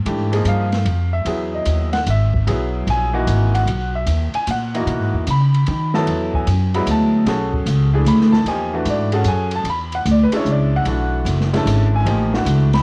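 Swinging eighths at 150 BPM in a lilting 3/4 carry this modal jazz excerpt, which feels open and spiritual and settles into E mixolydian from 6.1 s. A pizzicato upright bass sits up front with a woody, thumpy tone from its steel strings, moving between F#1 and D#3 from the very start. A bright upright piano enters at 0.1 s with brilliant, long-sustaining chords, opening on a rootless Dbadd9 before moving to Emaj9 at 1.3 s and an E9sus4 at 6.1 s. Beneath them, an open jazz drum kit plays hi-hat, kick, ride and snare in a small room, sounding smooth and dark, with dusky cymbals, a medium-tuned snare and a boomy kick, all coloured by cassette tape. The home cassette recording has little reverb, keeping the bass and piano close and intimate across the two matching passages.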